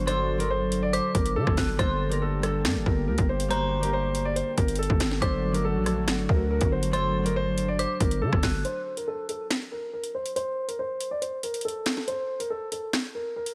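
Overdriven electronic drill drums with a hard-clipped kick, sharp snare and metallic hats drive this dark, ominous half-time hip hop excerpt alongside a growling, buzzy 808-style bass, a smooth vintage grand piano melody, a ringing fingerpicked concert harp, a mellow detuned analog pad in the background and an eerie inharmonic FM synth bell, before the bass, pad and bell drop out at 8.6 s for a break carried by piano, drums and harp, with the harp stopping at 10.1 s.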